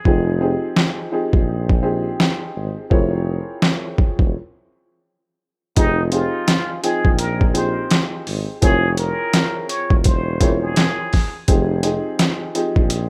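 Gritty, pitched-down boom-bap drums with a thumpy kick and overdriven crunch sit up front in this dark, tough hip-hop excerpt, over a mellow tuba bass line and a worn, woody, slightly detuned upright piano with tape character and audible action noise, while a distant, breathy plunger-muted trumpet adds a whispered jazz melody from 5.8 to 11.4 seconds, all in a rough home-demo mix with small-room reverb.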